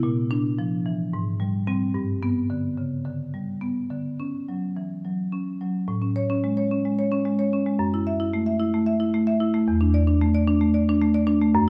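Moving in a straight 7/8 at 220 eighth notes per minute, this contemporary classical piece for solo marimba has a playful, flowing character in A major. The marimba, struck with medium hard mallets, sounds throughout the 11.7 seconds, ranging from E2 up to E5 with a woody, percussive tone from its rosewood bars and a boxy, up-front presence. The harmony in the first half drifts through Bb, G#maj7, G and Dmaj7. At 5.9 seconds a new section opens on Amaj7, moving to F#m7 and settling on E7sus4. A wet recital hall reverb with a 1.6-second decay surrounds the instrument, and the passage is cut from a longer piece.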